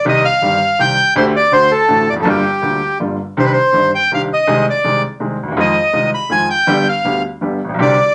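A wet studio ambience with a short tail and a softened top end frames this passionate, sultry tango passage in a rubato three-beat feel, cut from a longer piece. A reedy, close-miked bandoneon carries the melody up front, while a woody, brilliant upright piano with long sustain supplies the accompaniment beneath it. At 3.4 s the key shifts to C harmonic minor as the second section begins, moving through Cmadd9, Ab/C and Fm7 before settling on a G major chord at 6.7 s.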